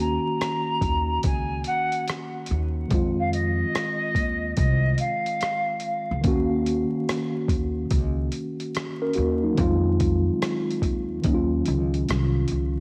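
A breathy jazz flute with a chiffy attack and vibrato carries the melody through the first 6.2 seconds, sounding distant behind low-pass filtering, cassette tape and tape echo. This melancholic, reflective lo-fi hip hop excerpt sits at 72 BPM in Eb dorian with a 16th-note swing, moving between Ebm7 and Fm7 before closing on Ebm9. A mellow tine electric piano plays clean accompaniment, a woody, dark pizzicato upright bass with gut strings holds the low end, and a gritty, compressed sampler-style drum kit with a thumpy kick, hi-hat and rim click enters at 0.4 seconds, all wrapped in light reverb and vinyl crackle.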